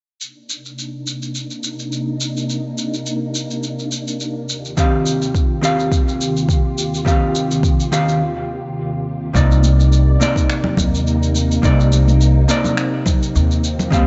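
A woody, pizzicato upright bass sits up front once it arrives at 9.3 seconds, joined by band-limited congas in the background in this blissful sunset chillout excerpt with a lightly swung feel. Before that, a silky, slow-attack string machine with ensemble chorus holds sustained Cm9 and Eb69 chords under a filter sweep, over electronic shaker and finger snaps. A dark, clean, picked hollow-body jazz guitar with tape echo and a deep, layered electronic kick come in at 4.8 seconds, and a short break follows before the bass enters, all bathed in light reverb and digital ambience.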